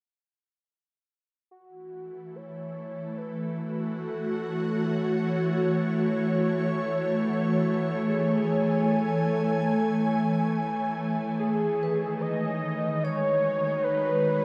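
Serene and melancholic, this free-time ambient excerpt in F# dorian, tuned to A4 = 439 Hz, fades in a velvety synth lead melody with chorus, delay and shimmer reverb at 1.5 seconds, joined at 2.5 seconds by an ethereal, airy pad holding up-front sustained chords through ensemble chorus and shimmer, while a vibraphone with soft mallets adds mellow, ringing arpeggios from 11.8 seconds, shortly after the harmony moves from F#m7 to B6, all set in a lush hall reverb.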